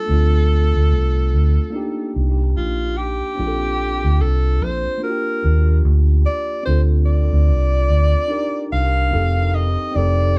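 Lovers rock reggae at 73 BPM with a swung, tender and sweet feel, where a smooth alto saxophone with vibrato sings the melody over mellow tine electric piano with dub echo and a round, punchy, foam-muted fingered electric bass sitting up front, moving through Dm7, Cm7, Bbmaj7 and Ebmaj7 before landing on F9 near 9.1 seconds in a moderate live-room reverb.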